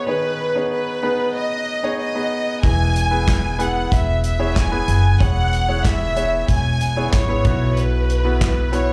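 A lush, smooth violin section carries the melody from the opening, bowed with vibrato and set close and up front, its line touched by a slapback echo. This is piano-driven pop at 94 BPM in a straight 4/4, with a driving yet bittersweet mood, cut from a longer piece. A clear concert grand piano with deep bass and a polished presence plays the accompaniment, sharing that slapback echo. At 2.6 seconds an upright bass enters, plucked and woody with steel strings sitting forward, alongside an acoustic drum kit with a punchy kick, a medium-tuned snare, hi-hat and handclaps in a small-room sound. The harmony moves from G#m/D# to E and settles on Bsus4 at 7.5 seconds, all heard as a live gig through the venue's PA with light club reverb.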